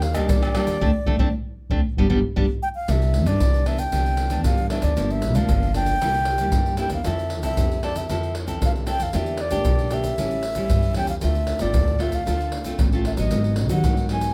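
A bright, reedy baroque flute with an airy wooden tone carries the melody, its straight tone, soft attack and lifted highs set in a plate reverb. This is a sunny, joyful blend of samba and choro in a straight four, cut from a longer piece. The flute has a solo spot at the opening, and the band punches out an accent from 0.8 to 2.9 seconds before the next section settles in on a Cmaj9. A fingerpicked classical nylon-string guitar supplies a warm accompaniment, with finger squeak audible through the close, detailed microphones. Underneath, a woody pizzicato upright bass with steel strings sits prominently. The pandeiro, egg shaker, tamborim and deep surdo sound up front yet carry the ambience of a large room, as the harmony moves through chords such as Fmaj7, Em7b5, A7 and Dm7 under a light overall reverb.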